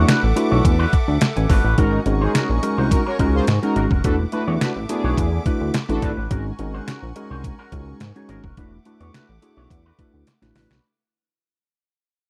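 Early-eighties boogie funk in a straight four, this feel-good, danceable passage is cut from a longer piece and fades out across its whole length, shifting between E9sus4 and Ab9sus4 chords. Up front, a detuned 8-bit digital drum machine lays down a thumpy kick, fat snare and hi-hat with an overdriven, sampler-style grit that sounds re-recorded in a small room, and it closes on a drum fill at 10.3 seconds. Beside it sits a glossy, retro chorused synth bass with a fast, plucky attack and a mellow sustain. A worn, slightly out-of-tune tine electric piano plays the accompaniment through a combo amp with light overdrive and phaser, while a bright, twangy electric guitar picks a compressed riff through an envelope filter and lush chorus. Distant, floating strings hold soft-attack sustained chords in the background, and a bold, nasal analog synth brass line with vibrato and chorus appears from 1.8 to 6.1 seconds. 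The whole take has the dry, close feel of a 1970s-style studio, touched by digital ambience.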